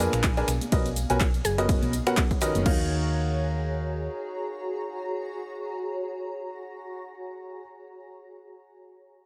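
Swung sixteenths drive this bittersweet, soulful piano house cut: an overdriven electronic kick and a punchy analog drum machine playing hi-hat, finger snaps, handclaps, cabasa, ride and crash, with very quiet tambourine and congas, all fall away by 2.8 s. A brief, woody mallet-like synth pluck sounds at 1.4 s, before they drop out. That leaves an up-front, brilliant, slightly detuned upright piano riff with dub echo and sidechain pumping, a round hollow-body fingered electric bass that stops at 4.1 s, and a blurred, evolving granular cloud pad, in a dry mix.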